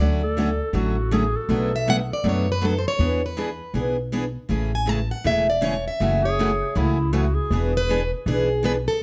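A swung 4/4 pulse drives this charming, lively snippet of acoustic string swing in the jazz manouche style, cut from a longer piece. A plugged-in steel-string acoustic guitar carries the picked melody up front with audible finger squeak, backed by a bright accompanying steel-string guitar and a second, very quiet one, while a woody, thumpy pizzicato upright bass anchors the low end. A mellow jazz clarinet with light vibrato, subtone and scooped notes adds a second line through tape echo at 0.2 and 6.2 seconds, all set in light reverb.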